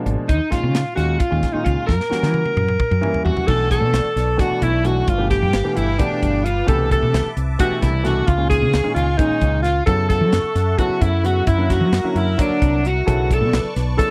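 Electric jazz fusion in an intense, driving 7/8 at 263 BPM counted in eighths, settling into B minor at 3.5 s after an opening marked by grand piano fills and a drum fill. An up-front alto saxophone in jazz style, with light vibrato, scooped notes and a slapback echo, carries the melody, while a bright, crunchy, double-tracked overdriven guitar plays a second line in the same register. Beneath them sit a round, woody fretless bass, natural baby grand piano accompaniment and a polished funk kit with a medium-tuned snare and tight kick, and from 3.8 s a swirling, detuned sawtooth pad with phaser and chorus sustains chords in the background of this dry, close 1970s-style studio sound, cut from a longer piece.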